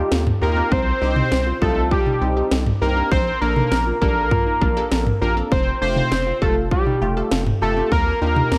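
Upbeat and bright, this short synth-pop cut moves at 100 BPM in a straight 4/4 feel in F mixolydian, with a bright 1980s-style digital sheen and a moderate plate reverb, as chords drift from Ebadd9 through Cm, Bbmaj7 and Fadd9. A fat, detuned sawtooth lead with vibrato, chorus and digital delay carries the melody up front, while a funky, punchy polysynth comps beneath it and a soft, round pluck with chorus and delay spins arpeggios in the background. A rubbery, hollow square-wave bass bounces underneath, and a house drum kit entering at 0.1 seconds adds an overdriven punch with a cracking snare, kick and toms.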